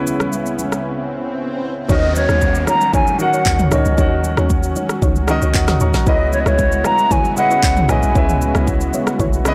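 A straight 4/4 amapiano groove at 115 BPM in Eb phrygian sets a hypnotic, late-night mood, as an up-front deep house kit with a deep kick and woody snare, distant congas, a clear, intimate grand piano with audible action noise and a lush, detuned pad with chorus and sidechain pumping open on Dbm7, joined by an electronic swell and downlifter at 0.8 seconds, before a mellow, airy silver flute melody with tape echo, soft round plucked stabs and a dark, percussive log drum bass enter at 1.9 seconds over Ebm7, with a piano fill following at 5.0 seconds, all in a dry, gritty digital ambience, in this cut from a longer piece.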